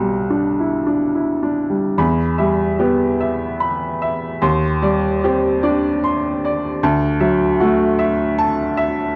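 A bright, woody upright piano plays alone from the first moment, sitting up front in a close, detailed recording with a light touch of reverb, spanning from B1 up to C6. This tender, peaceful passage of neoclassical minimalist piano, cut from a longer piece, moves in a gently rubato 3/4 through G6/B, Em, Cmadd9/Eb and Dadd9. A new section begins at 2.0 seconds and carries on to the close at 9.2 seconds.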